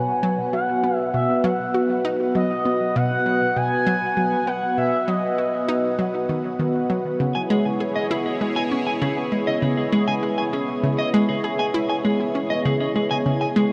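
Ambient, sequencer-driven space music at 99 BPM in a straight 4/4, hypnotic and cosmic, moving from B to C#m7 in this short excerpt drenched in a huge, wet reverb. A round, detuned analog pluck riff with a fast attack runs throughout alongside an evolving, full-bodied resonant pad with a slow attack, filter swell and sub octave, while a smooth, mellow synth lead with vibrato sings the melody until 6.3 seconds. At 7.3 seconds a clean, picked electric guitar enters with arpeggios, wrapped in shimmer reverb and analog delay.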